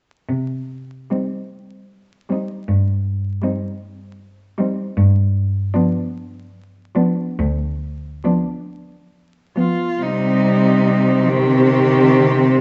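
A slow, rubato 12/8 pulse of about 42-54 dotted-quarter beats per minute carries this melancholic, solemn passage, cut from a longer classical piece for cello ensemble in C minor. A clear, bowed cello sits up front on the bass line and opens alone at 0.3 s, its tone smooth and even with vibrato. At 1.1 s three more bowed cellos join. Two rich-toned players carry the melody and an accompanying part: one sounds distant, with light, even vibrato, while the other is expressive, with a soft attack and portamento. A warm, close-sounding cello adds an expressive second line with the same soft attack and sliding portamento. The harmony rests on C minor, moves to G7 at 5.0 s, and returns to C minor as a new section begins at 10.0 s. A moderate recital-hall reverb surrounds the ensemble, and the dark production carries vinyl crackle and muted highs.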